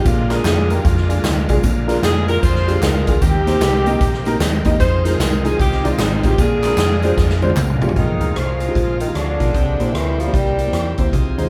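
Uptempo gospel at 152 BPM in 4/4, swinging its eighth notes with a hopeful, reverent mood, taken from a longer piece and played by a band live in one large studio room. A clear saxophone section carries the melody with ensemble vibrato, over a woody, slightly detuned upright piano with short sustain and a bright, shouting tonewheel organ holding chords in the background through a fast rotary speaker. A round, punchy hollow-body electric bass sits low and dark beneath them, while an up-front big-band drum kit with a boomy kick and medium-tuned snare drives the swing, joined by tambourine and group handclaps in the background until 7.9 seconds. A drum fill from 7.2 seconds leads into a new section at 8.0 seconds, where a breathy, whispered tenor saxophone takes an intimate solo with scooped notes and a soft attack. The harmony moves from Bb7 through Eb6 and Fm7, then to Bb7sus4 and C7, all in a natural, roomy sound.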